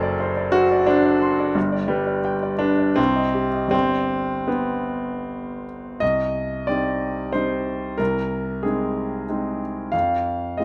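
A clear, intimate grand piano sits up front with audible action noise, playing alone in this passionate, bittersweet romantic character piece in a rubato 3/4, moving from a D7/F# through G and C minor before a second section settles on Ab over C, all within a moderate large-studio reverb in this short cut from a longer piece.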